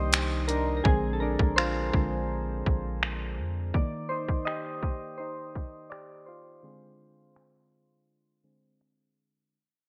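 A straight 4/4 trap beat at 83 BPM, with finger snaps, metallic hi-hats and a hard-clipped kick treated with gated reverb, drives this moody, sensual contemporary R&B excerpt, where round, ring-modulated electric-piano-like synth keys with chorus move through Cm7, Bb9 and Dm7b5 over a deep, dark sine 808 bass that stops at 3.7 seconds, all under a bright 1980s-style digital sheen with light reverb and a fade-out.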